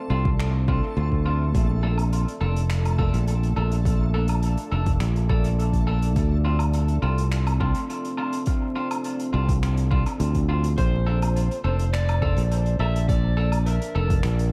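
A steady, straight 4/4 pulse from an overdriven, deep electronic kick and a distant, roomy soft-mallet kit of finger snaps, hi-hat and woodblock drives this deep, hazy ambient dub cut from a longer piece, with a punchy, up-front fingered bass beneath twangy, scooped clean guitar stabs sent into dub echo, while a moody sawtooth pad fades in over the first 10.8 seconds alongside a reversed, granular swelling texture, and from 10.8 seconds a slightly broken-up slide guitar melody enters, all circling Dm7 and Bbmaj7 in an echo-heavy small-room mix dusted with vinyl crackle.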